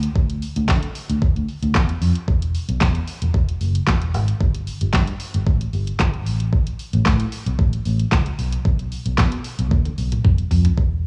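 Electric bass and drum kit start together at once in this short, energetic yet bittersweet dance-pop excerpt in a straight 4/4. The vintage muted fingered electric bass is dark, round and punchy, with a foam-muted, amped tone that sits up front and pumps through sidechain compression. The smooth R&B drum kit has an electronic, produced character, pairing a knocking kick and fat snare with dark hi-hats, handclaps and toms, all tape-warm and close in the mix. The room carries little reverb, giving the cassette home-recording sound a dry, intimate feel. A drum fill arrives at 9.7 seconds and runs to 10.8 seconds, just before both parts end at about 11.0 seconds.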